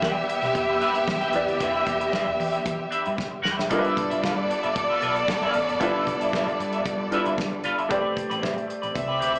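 A lush bowed string section carries the second line in this driving, sultry disco clip, its expressive vibrato and portamento coloured by a slapback echo. Beneath it, a clean picked electric guitar adds accompaniment through a wah and its own slapback echo, while a concert grand piano fills in with an intimate, natural tone, deep bass and audible action noise. A dark, round, punchy hollow-body bass and an acoustic soul kit with a tight kick, medium-tuned snare and rolled-off top hold a straight 4/4 at 114 BPM, with a drum fill from 3.2 to 3.7 seconds. The harmony moves from Em7 to G13 at 3.7 seconds, then to Am11. The whole clip sounds like a live gig heard through the venue's PA, with moderate club reverb and a small-speaker character.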